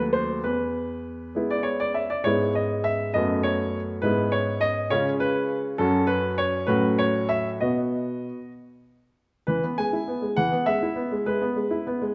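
Classical-period piano sonatina excerpt in a playful, graceful 6/8, played by a clear, open baby grand up front with short sustain, ranging from D#2 to G#5 and set in the wet reverb of a recital hall, its phrases moving from home-key harmony through a cadence on B before a new section begins at 9.5 seconds.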